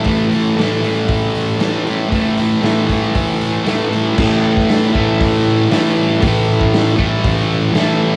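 A thick fuzz guitar leads this short, gritty garage rock cut, its bright, distorted, double-tracked riff sitting up front and running from A2 to A3 over an opening A5 chord. The raw acoustic drum kit of crash cymbal, hi-hat, punchy kick and medium-tuned snare sits lower in the mix, its sound saturated and dark with a rolled-off top and the feel of a stone room. The tempo is a straight 117 BPM in 4/4, giving the piece a swaggering stride. Both parts carry the grit of a home cassette recording under light reverb. The music shifts into a new section at 4.2 seconds, the drums stop at 7.9 seconds, and the picked guitar plays on alone until the cut ends at 8.2 seconds.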